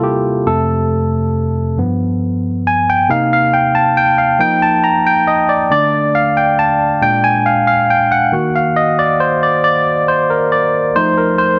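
A bright, barky tine electric piano carries this short gospel passage by itself from 0.0 to 11.6 seconds, its lightly overdriven tone sitting direct and up front. The mood is uplifting and hopeful, moving at a slow 46 beats per minute in a straight 6/8 felt in dotted quarters. The piano spans from F2 up to Bb5, covering deep bass notes and high treble in a single solo part. Its harmony travels from F through G7, Cm7, F7sus4 and Dmadd11 to Bb7, then settles on Ebm before arriving at F7 near 10.9 seconds. A light reverb gives the instrument a touch of space, and the clip is cut from a longer piece.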